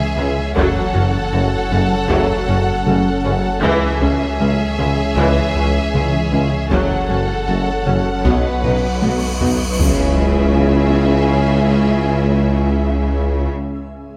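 Futuristic and brooding, this cinematic cue cut from a longer hybrid orchestral and electronic film score moves at a straight 78 BPM in 4/4, in C# minor, circling C#m and F#m before a B chord lifts it back home. Two lush bowed violin sections with vibrato carry the melody and a second line, one symphonic and the other close and studio-rich, while a rich viola section, a rich cello section, a very quiet clear double bass section and a clear tuba fill out the lower orchestra in the background. A very quiet mellow French horn section holds sustained chords beneath a cloudy, evolving granular pad whose blurred, detuned tones bring their own built-in reverb. A glassy, crystalline wavetable pluck with chorus and a moving notch ripples in arpeggios, and a smooth synth bass riff rides over a deep, thick, saturated sub bass; the pluck and the synth bass both drop out at 9.6 s. Very quiet taiko drums struck with heavy sticks play a fill from 8.6 s, and a huge, bright cymbal swell rises from 8.7 s into an impact at 9.8 s. 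The whole cue sits in a wet concert hall reverb.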